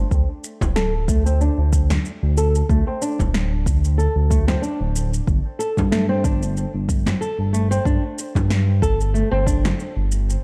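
A smooth, nasal synth bass opens this hypnotic organic downtempo excerpt at 93 BPM in 4/4 with a light 16th-note swing. At 0.1 s it is joined by a deep, overdriven electronic kick and a punchy, layered shaker-and-snare that is also overdriven. From 0.6 s a dry, hard-handed frame drum sits in the background, and fingerpicked flamenco guitar arpeggios follow through a low-pass filter and delay, with a filter sweep on the nylon strings over chords moving from D5 to Gsus2. The production is dark and warm, with light reverb and digital ambience and the mellow bass up front.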